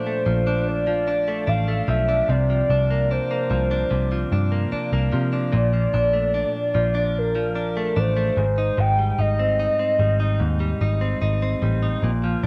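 Bathed in a moderate echo-chamber reverb with digital ambience, this dreamy, nostalgic indie and bedroom-pop fragment at 74 BPM in 4/4 carries a warbling, detuned synth lead with a soft attack, subtle chorus and tape echo over a clean, compressed, direct-recorded electric guitar awash in lush chorus and vibrato and a dark, round, foam-muted picked bass that enters at 0.3 s, moving through Bbmaj7, C9sus4 and Abmaj7 until the lead stops at 10.8 s.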